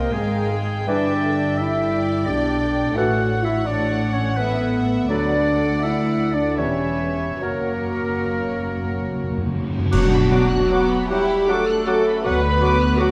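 Yearning and solemn, this slow romantic orchestral movement in B minor and 3/4 moves with rubato at 70-86 BPM, with sul tasto violin sections carrying a soft-attack, floating melody and a clear second line alongside a distant viola accompaniment, mellow French horn chords, and an intimate foundation of dark double basses and warm cellos. A pure flute, a lightly vibrant oboe and a very quiet clarinet add second lines over bassoon accompaniment, until hard-mallet timpani, bright cymbals and concert bass drum enter at 7.4 s for a fill leading to an accent at 9.9 s, set in a wet concert hall reverb.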